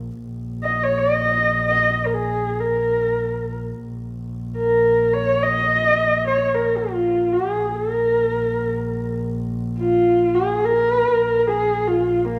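A husky, woody horsehead fiddle carries a free-time Mongolian folk melody in Bb yu mode with vibrato and portamento from 0.6 s, bowed up front over a dark, airy, soft-attack double bass drone on a low Bb played sul tasto, all set in a recital-hall reverb for a vast, windswept mood in this fragment of a longer piece.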